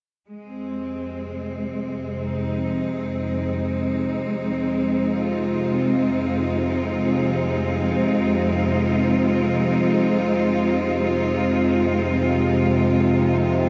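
Floating in free time, this dark ambient drone in F minor feels desolate and cavernous, with a studio cello section holding lush, intense, vibrato-rich sustained chords between Ab3 and F4 from 0.3 s onward. At 0.9 s a string-like synth drone enters beneath it, spanning F2 to C3. It has a detuned sawtooth tone with a noise layer, slow attack, long release, phaser and its own reverb, and a filter sweep runs through it. A plate reverb soaks the whole dreamy mix, which is dark in its upper register and tuned to A4 = 441 Hz, and the passage is cut from a longer piece.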